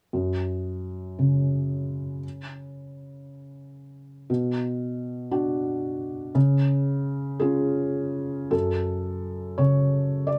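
Close, detailed microphones and light reverb put a soft, felt-muted upright piano up front in this intimate short cut from a longer neoclassical minimalist piece. Playing alone from 0.1 to 10.4 seconds at a rubato 58 BPM in 6/8, the piano moves through F# harmonic minor over a span from F#2 to D5, passing from an open F# fifth through Bm and C# before settling on F#m at 8.5 seconds. The mood is reflective and wistful, with a mellow, natural tone.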